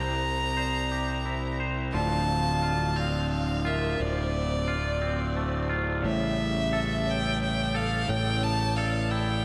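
A clear, close violin carries the melody up front through a diffuse ambient delay, over a fuzzy, overdriven fingered electric bass, picked twangy electric guitar arpeggios with subtle chorus, mellow soft-mallet vibraphone arpeggios in the background and very quiet pedal steel guitar chords, in this cinematic, cathartic post-rock excerpt at 58 BPM in 6/8 that moves through C7, Dm7 and A7 in D minor within a dreamy, hall-reverb-soaked mix.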